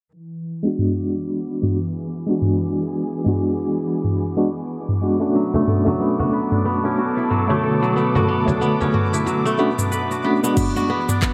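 A swung 4/4 groove from an overdriven afro-pop drum kit with crash cymbal, handclaps, shaker and toms drives this mystical, organic downtempo passage, cut from a longer piece, over a veiled, con sordino string section holding dark, softly bowed chords that pump against the sidechain. Up front, a worn, slightly out-of-tune tine electric piano plays accompaniment through a combo amp with tremolo, analog delay and a filter sweep, moving from E7 to Bm7, before a crisp, ringing fingerpicked kora enters at 5.4 seconds with tape-echoed arpeggios and a deep, saturated frame drum sits in the background. A deep, overdriven electronic kick arrives at 10.6 seconds as the harmony returns to E7, all set in spring reverb within an echo-heavy, low-passed mix.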